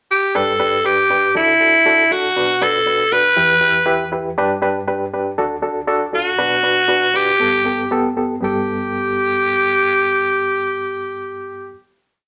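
In a straight 4/4 groove, this short, uplifting soul piece opens with a raspy, gritty alto saxophone at 0.1 seconds, playing punchy, forceful call phrases built on motifs, with scooped notes and light vibrato. From 0.3 seconds a reedy electric piano, lightly overdriven with fast tremolo and heard through its built-in speakers, pulses eighth-note chords in close voicing beneath the sax. Both parts sit up front in a wet studio reverb, and the piece settles onto a final chord from 8.4 seconds.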